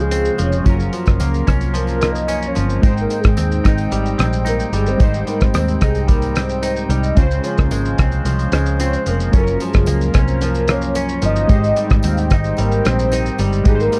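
Sunny and laid-back, this 14-second stretch of indie bedroom pop moves at an easy 111 BPM in Ab major, its straight 4/4 groove cycling through Dbmaj7, Gbmaj7 and Abmaj7 chords. A velvety synth lead carries the melody as a soft solo throughout, its detuned sawtooth tone with a sub octave and vibrato dressed in phaser, lush chorus, analog delay and plate reverb. Underneath, a clean, direct-recorded electric guitar adds twangy, scooped, compressed picking with an analog chorus and a warbly pitch drift, while round analog keys with a filter sweep and cassette-tape character sit in the background. A hand-pumped harmonium breathes reedy, nasal sustained chords in a boxy small room. The foundation comes from a foam-muted, round fingered electric bass and a cloth-damped, thuddy drum kit of kick, hi-hat, rim click and shaker, both up front, the drums dry with a rolled-off top and a gritty 12-bit sampler texture. 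A jingly tambourine ticks along very quietly, and the whole production leans dark and warm with only light reverb.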